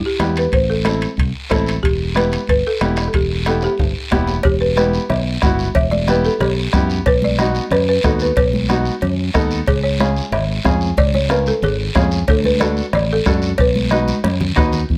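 A straight, danceable cumbia groove in 4/4 rolls along on a soft-beaten bombo, congas tucked in the background, raspy guiro, and ringing metal timbales and cowbell, with drum fills arriving at 3.6 and 14.1 seconds. A round, dark fingered electric bass sits up front while a clear, slightly detuned upright piano with short sustain plays accompaniment. A woody, rustic folk marimba struck with medium hard mallets carries the passionate melody through a short, close and dry-sounding passage cut from a longer piece.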